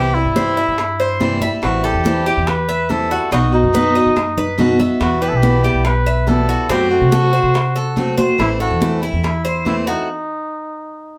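Cuban son and guajira at 142 BPM with a warm, nostalgic mood, led by a cup-muted trumpet playing a soft, veiled, breathy jazz-style solo with light vibrato up front, over a picked acoustic archtop guitar with audible finger squeak and a dark, woody, thumpy pizzicato upright bass on gut strings. A bright, metallic Cuban tres adds picked arpeggios on doubled strings, while high-tuned congas struck with hard hands and tight, saturated bongos played with soft hands sit in the background, with a drum fill at 4.2 seconds. The band plays live in one room with a wet studio reverb, and after the ensemble stops at 10.1 seconds the trumpet carries on alone until 11.2 seconds.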